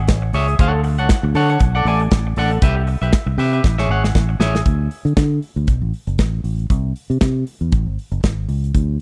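A dark, punchy fingered electric bass opens this driving, glamorous disco excerpt at 118 BPM in 4/4, joined at once by a polished, airy studio drum kit with tight kick, medium-tuned snare and hi-hat, all set in a dry, close 1970s-style small room with a light 16th-note swing. A bright, clean, picked semi-hollow guitar with spring reverb adds scooped, hollow-body accompaniment over Amaj7, Dmaj7, Bm7 and Cmaj7 chords until 4.6 s, while a drum fill closes the opening section. From 4.7 s the bass and drums carry a chordless passage before Amaj7 returns near the end.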